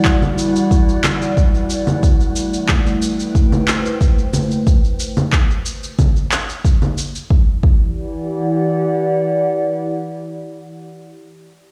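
A warbly, tape-like pad of detuned, lo-fi chords opens this earthy organic downtempo excerpt, pumping under sidechain with chorus and phaser, while overdriven electronic handclaps, shaker and congas sit up front and a breathy, dark wind-like noise texture drifts in the background until 2.0 s. A deep, tape-warm electronic kick arrives at 0.1 s and anchors the groove; the hand percussion stops at 7.3 s, and once the kick drops out the mellow pad carries on alone over a closing Em7. A lush hall reverb gives the recording a roomy, nostalgic glow.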